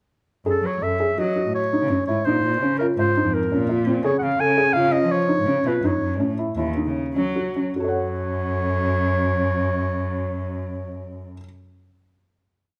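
A light reverb gives this short, complete chamber piece an intimate, close-quarters sound, with a hypnotic, pensive mood. It moves in an uneven 5/4 metre at a straight feel, somewhere between 147 and 170 BPM, centered on F# dorian. A felt-muted upright piano circles through a soft, boxy ostinato of arpeggios, its mellow, dark tone carrying audible action noise. Beneath it, a single bowed cello plays a syncopated bass riff with expressive vibrato and portamento. Up front, a solo clarinet with a soft attack shapes a classical-style melody from short calling motifs. The tempo slows from 4.8 seconds, and at 7.8 seconds the trio settles onto a closing F# minor chord.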